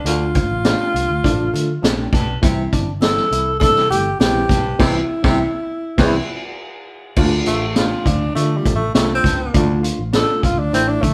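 Driving and urgent, this uptempo 1960s-style soul excerpt in D minor moves at 101 BPM in a straight 4/4, with a breathy, up-front tenor saxophone carrying the melody with vibrato and scooped notes before taking a solo from 7.2 s. A barky, lightly overdriven reed electric piano with fast tremolo provides accompaniment and slips in a fill just before that point, while a round, foam-muted fingered bass, a faint, clean hollow-body jazz guitar riff and a smooth-topped baritone saxophone riff, which stops at 9.8 s, fill out the band. A punchy vintage drum kit with dark cymbals and a high-tuned snare drives the groove, with barely audible congas beneath, the players sounding live together in one room with moderate studio reverb.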